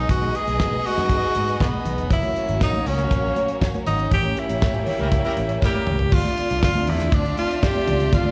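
A breathy, up-front tenor saxophone carries the melody with subtone and scooped notes in this joyful, celebratory disco groove at 119 BPM, cut from a longer live gig heard through the venue's PA with club reverb. Beneath it, a dark violin section adds an expressive second line with portamento and slapback echo, while a clear string section holds lush, bowed chords in the background and a fingered electric bass stays warm and amped. A damped 70s drum kit with a fat snare and tight kick drives the beat alongside thick-skinned congas, jingly tambourine enters at 2.6 seconds, and a distant horn section punches in with octave-doubled stabs at 5.0 seconds as the band hits accents and a drum fill.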